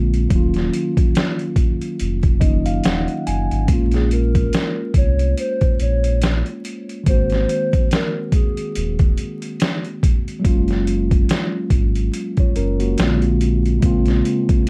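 Reflective and hazy, this lo-fi hip hop fragment in Bb minor drifts at 71 BPM with a swung 16th-note feel, as a mellow tine electric piano with cassette-tape coloring moves through chords from Ebm7 to Bbm7 over a deep sine sub bass with octave and a gritty, pitched-down sampler-style drum kit with a thumpy kick, while a hollow, woody clarinet-like synth lead with chorus, vibrato and tape echo sings briefly from 3.9 to 9.0 seconds, all set in light reverb under a layer of vinyl crackle.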